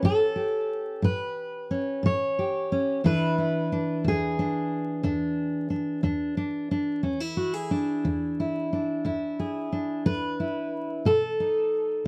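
Acoustic country blues in E mixolydian at a laid-back 60 BPM in 12/8, this rollicking twelve-second excerpt features a lone fingerpicked steel-string dreadnought guitar, full-bodied and up front, ranging from E2 to C#5 over A7, E7 and a B7 arriving at 11.1 seconds, captured in a dry, close 1970s-style studio sound with vinyl crackle and tuned to A4 = 436 Hz.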